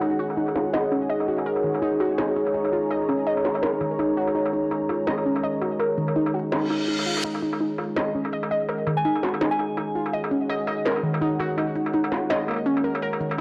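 Half-time drum and bass with a dark, heavy mood, built on a deep, detuned analog pad holding sustained chords with 12-bit sampler grit, while a warbling, dusty pluck plays arpeggios through chorus, phaser, tape echo and a filter sweep that runs the length of this cut-down fragment. An industrial drum kit with a clanging snare, crisp hats and struck metal sits low-passed and swung beneath them, a reverse cymbal rises at 6.7 seconds, and a soft, pure FM bell sounds a brief melodic note at 9.0 seconds. The gritty hardware recording carries transformer saturation, cassette tape colour, faint mains hum and a lush hall reverb.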